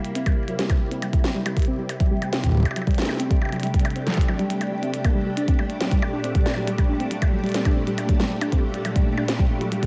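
Set in light reverb and a digital ambience, this short excerpt of intricate, cerebral IDM moves at 138 BPM in a straight 4/4, with a silky, vintage string machine holding slow-attack chords through phaser and ensemble chorus. A soft, round, dark pluck plays arpeggios that decay into chorus and diffuse ambient delay, while a glitchy kit of clicky hats, percussion blips and a tiny snare sits low under its own delay. A deep, up-front electronic kick arrives at 0.3 seconds, and the harmony shifts from C7 to Gmadd9 at 5.4 seconds.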